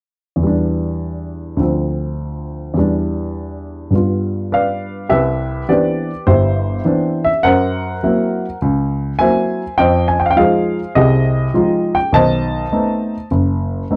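A dark, mellow baby grand piano plays solo jazz from 0.4 s, swinging its eighth notes at 102 BPM in 4/4 in C major, with a warm, playful mood. Its intimate, up-front sound carries audible action noise and short sustain, heard through light reverb in a dry, close 1970s-style studio recording. In this excerpt, the opening Em7, Dm7 and G7 changes give way at 5.1 s to a second passage moving through Cmaj9, F#7#11, Fm9 and B7b9 before the piece breaks off at 14.0 s.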